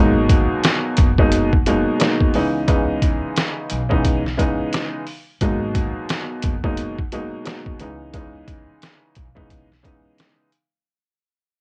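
A swung boom-bap groove at 88 BPM in 4/4, with 60% swing on the sixteenths, drives this tough, dark hip-hop passage cut from a longer piece. A sampler-style drum kit enters at 0.3 seconds and sits up front, its thumpy kick, medium-tuned snare and hi-hat compressed, pitched down and gritty, re-recorded in a small room and coloured by cassette tape. A clear, slightly detuned upright piano carries the accompaniment, also up front, its worn tone filtered at both ends and run through tape as it moves between G#m7 and C#m7. Beneath it, a pizzicato upright bass with steel strings sits in the background, woody and dark in its low register. The recording has light reverb and a homemade cassette sound, and the music fades out over its full 10.9 seconds.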